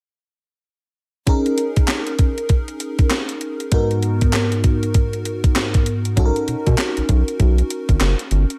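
New jack swing R&B with a bouncy, flirty feel and a swung sixteenth-note groove, cut from a longer piece. From 1.3 seconds, a lush, dreamy FM electric piano layered with a soft pad and treated with chorus and phaser moves through D#7sus4, G#m9 and Bmaj7 over a gated 80s digital drum machine with a thumpy kick, gated-reverb snare, handclaps and hi-hat. A round, deep analog bass joins at 6.2 seconds, and the dry mix keeps each part up front.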